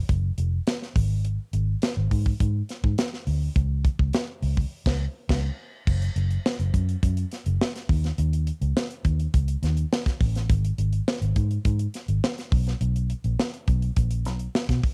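A muted, fingered electric bass and a tight acoustic funk kit start together, a breezy, glossy slice of polished 1980s jazz-funk pop at 104 BPM in a straight 4/4 feel, cut from a longer piece. The bass sits up front with a dark, round, foam-muted amped tone, while the dry kit of kick, snare, hi-hat and bright crash cymbal is equally forward, its medium-tuned snare and tight kick giving a crisp edge. After a band accent from 4.7 to 5.9 seconds the groove moves into a new section, all captured dry in a homespun cassette recording.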